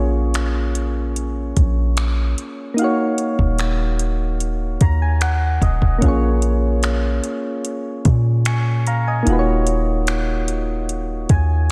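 Soft, round electric-piano-like synth keys with a warbling chorus shimmer and a deep, boomy 808-style bass open this late-night, longing contemporary R&B excerpt in Eb minor at 74 BPM, joined at 0.3 seconds by a smooth electronic drum kit of finger snaps, metallic hi-hats and a soft kick, as the chords move between Bbm7 and Ebm9 under light reverb and the keys add brief fills at 4.4 and 10.9 seconds.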